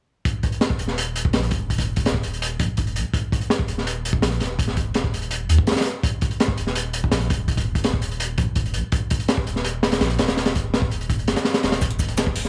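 A crunchy, gritty breakbeat drum kit leads this raw, nostalgic drum and bass and jungle excerpt, its high-tuned snare, tight kick and hi-hat sitting up front with a dark, saturated, rolled-off top in a small, dry room. A deep, thick sub bass with a triangle-like tone and fast attack enters at 0.8 seconds and sustains beneath it. At 11.8 seconds a pitched-up, compressed sampler-style kit of hi-hat, shaker and medium-tuned snare flickers in briefly, its tape-like grain thinned by high-pass filtering.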